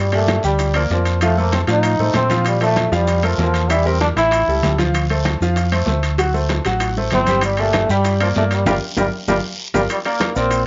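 A bright, roomy trombone carries the melody from the very start over a dark, round fingered electric bass, opening this driving, passionate salsa excerpt taken from a longer piece. An up-front baby grand piano supplies the accompaniment, its brilliant, worn and intimate tone marked by audible action noise and short sustain as the harmony moves from Gm7 through F7, Bbmaj7 and Edim toward A7 and Dm7. Behind them, ringing congas, low-tuned bongos played with soft hands, metal-shell timbales, a raspy, close guiro and grainy, mellow maracas keep a straight 4/4 groove churning, with the congas, bongos and maracas set back in the mix. The trombone drops out at 4.8 seconds and returns at 7.1 seconds, and near the end the band hits an accent while a drum fill leads to a closing Bbadd9 chord at 9.9 seconds. The overall sound has a soft, rolled-off top and a moderate studio reverb.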